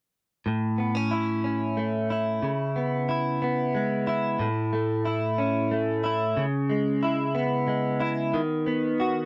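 A clean electric guitar, recorded direct and double-tracked, opens this short pop fragment at 0.5 seconds and carries it alone as the accompaniment part. The mood is tender and swaying, set in 6/8 with a straight feel at 61 BPM counted in dotted quarters. The guitar's picked tone sounds warm and compressed, sitting up front and spanning A2 to F#4. The harmony moves from A to C#m7, then repeats that pair when a second section begins at 4.4 seconds, before arriving on B/D# near the end at 8.3 seconds. The sound is dry and close, in the manner of a 1970s studio, with a modest booth ambience around the instrument.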